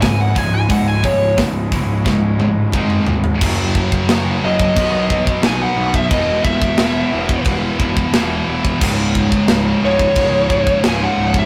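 A smooth overdriven lead guitar solos up front over a tight metal drum kit with bright cymbals and a crunchy, double-tracked overdriven guitar riff that drops out at 3.4 s after a drum fill, as this dark, heavy 89 BPM heavy metal excerpt in C# minor rolls on with high-gain and scooped distorted guitar riffs and a growly fuzz bass in the background, captured as a rough rehearsal-room recording with small-room reverb.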